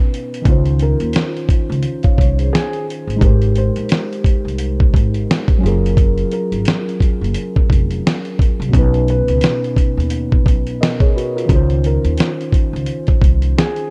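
A dark, intimate small-room sound frames this dreamy, nostalgic lo-fi hip hop excerpt at 87 BPM with a lazy 16th-note swing, where a gritty, compressed sampler-style drum kit sits up front with a thumpy kick and fat snare while a woody pizzicato upright bass supports the harmony. Muted, felt-like synth keys with chorus and a low-pass filter carry soft, decaying chords moving from Dbmaj9 through Abmaj9, Gbmaj9 and Badd9 back to Dbmaj9. From 0.8 seconds a mellow, thickly felted upright piano with audible action noise and tape echo sings a quiet melody, briefly joined between 2.0 and 3.2 seconds by an airy vibraphone played with soft mallets and slow motor vibrato.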